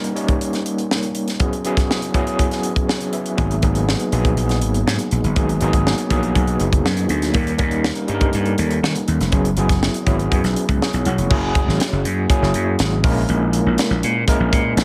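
Bittersweet and urban, this polished 1980s jazz-funk pop excerpt rides a straight, steady groove in 4/4. A barky, overdriven tine electric piano carries the accompaniment from the start, colored by medium tremolo and subtle chorus and heard through a combo amp. A tight funk drum kit shares the opening, its high-tuned snare, tight kick, hi-hat and dark crash cymbal sounding in a small, close room. At 3.4 seconds a growly, gritty slap bass enters, bright and punchy with its own overdrive. The harmony moves from D#7 and F#9sus4 to G#m9, then shifts into a new section at 11.3 seconds that closes on A#m7b5, all in a dry, up-front mix.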